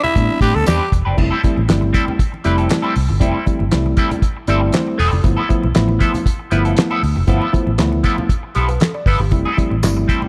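A raspy, growling tenor saxophone leads this cool funk excerpt up front until 0.9 s, while from 0.2 s a cloth-damped, thuddy drum kit with a fat snare and handclaps, a round, foam-muted fingered bass and a worn, slightly out-of-tune tine electric piano that takes a brief fill at 4.2 s come in, all set over a bright, scooped clean guitar with wah and spring reverb, very quiet ringing congas and a faint jingly tambourine in a dark small-room production.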